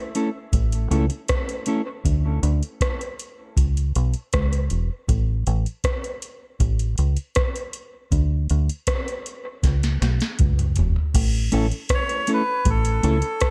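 Hazy and laid-back, this dub reggae excerpt rides on an overdriven vintage rhythm box with a deep kick, crisp snare and metallic hats, sounding as if re-recorded in a large room, while a deep, round, foam-muted fingered electric bass anchors it up front from 0.5 seconds. A dark, clean electric guitar plays briefly at the start and returns at 11.5 seconds, its notes trailing in dub echo, and a drum fill from 9.6 seconds leads into a new section. There a reedy, breathy melodica enters at 11.9 seconds with the melody, nasal and boxy, soaked in the same dub echo over a digital ambience.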